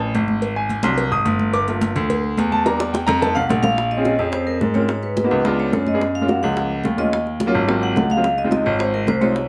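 A driving, straight 4/4 pulse at 215 BPM anchors this sophisticated Afro-Cuban jazz passage, cut from a longer piece. Warm, high-tuned congas played with soft hands sit beside round, low-tuned cowbell and bongos that sound close and dry, while a bright, brilliant grand piano holds the bass line up front with long sustain. A second grand piano, clear and intimate with audible action noise, carries the accompaniment and takes a solo spot at the opening, with a drum fill arriving at 2.7 seconds. The vibraphone enters at 3.4 seconds with the melody, its medium hard mallets giving a metallic, ringing, airy tone shaped by a slow motor vibrato. The harmony moves through rich extended chords such as Gm9, Bbm7, Db7b9 and Gbmaj7 before settling on Dbmaj9, all set in a moderate studio ambience.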